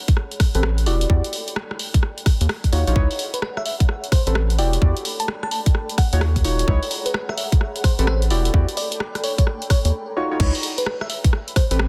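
Skippy and bouncy, this UK garage two-step excerpt swings its sixteenths over a tight, layered electronic kick and a tape-warm analog drum machine with crash, hi-hat, rim click and a softly clipped snare. A rubbery, hollow square bass sits up front beneath deep, mellow chord stabs with chorus and tape echo, while a cloudy, blurred granular pad fades in until 10.4 s in the background with its own reverb and sidechain pumping. From 3.3 s a bell-like, sparkling FM electric piano carries the melody through chorus, phaser and tape echo, and after a short break at 9.9 s the cycling minor-ninth chords continue in light digital ambience and a dense, heavily limited master.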